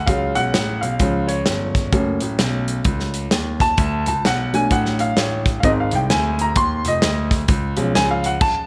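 Uptempo gospel in F# harmonic minor at 130 BPM with a swung 4/4 feel, fervent and solemn, where a woody upright piano carries the lead from 0.0 seconds over a clear grand piano holding the low bass line with audible action noise and long sustain, a modern studio drum kit with bright cymbals, a medium-tuned snare and punchy kick, and light reverb, as the chords move from C#sus4 through F#m, D and G# back to C#.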